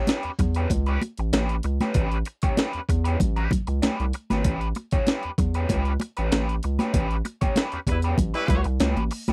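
A straight 4/4 funk groove at 96 BPM in A mixolydian, this short excerpt from a longer piece opens on an A9 chord and rides a compressed, sampler-style breakbeat kit with a thumpy kick, high-tuned snare and hi-hat, pitched up and gritty with a tape-warm edge. Bright, damped congas with a thin, high-tuned skin sit close and dry in the mix, while a round, deep analog bass with a fast attack and sustained, dark tone holds the low end up front. A crunchy, overdriven electric guitar, picked and filtered through wah, supplies the accompaniment in a bright register. Near the end, a band accent arrives at 6.9 seconds, and a loose, roomy horn section slips in briefly from 7.9 to 8.6 seconds as a second line. The mood is playful yet gritty, captured as a dry, close 1970s-style studio recording with little reverb.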